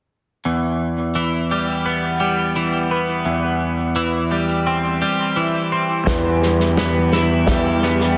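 A bright, twangy twelve-string electric guitar opens this brooding, cathartic post-rock excerpt at 0.5 s, its clean, picked arpeggios coloured by analog chorus and a diffuse ambient delay as the chords move from Em to C/E. At 6.1 s the music opens into a fuller passage: a growly fuzz bass, an acoustic indie drum kit with a tight kick and medium-tuned snare, soft felt-muted upright piano arpeggios with audible action noise and their own ambient delay, and very quiet bowed chamber strings with smooth vibrato all enter. The dreamy mix is soaked in lush hall reverb, with the guitar, bass and drums up front and the piano set in the background.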